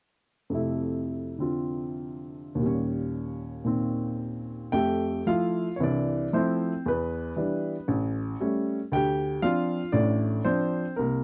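Swung eighths at 115 BPM in 4/4, loosened by rubato, give this brief solo jazz fragment in F major a playful, swinging lilt. A lone upright piano, woody and intimate with audible action noise, ranges from A1 to G5 from 0.5 to 11.2 seconds, moving from Fmaj7 and Eb7 into a second passage at 4.7 seconds that passes through Em7, A7 and Dm7. The sound is dry, close and up front, with a 1970s studio character and a light touch of reverb.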